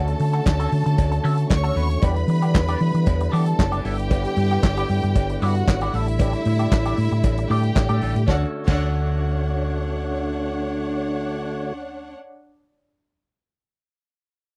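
A lush, bowed string section, a clean wah-treated electric guitar, a fat tonewheel organ through a fast rotary speaker and a dark, round hollow-body bass open this joyful, danceable disco excerpt, cut from a longer piece and recorded dry and close in a 1970s studio style. An up-front soul drum kit with a fat snare, tight kick, hi-hat, handclaps and crash drives the groove alongside a distant metallic cowbell, both dropping out at 8.8 seconds. The bass, guitar, organ and strings carry on over the Dmaj7 return.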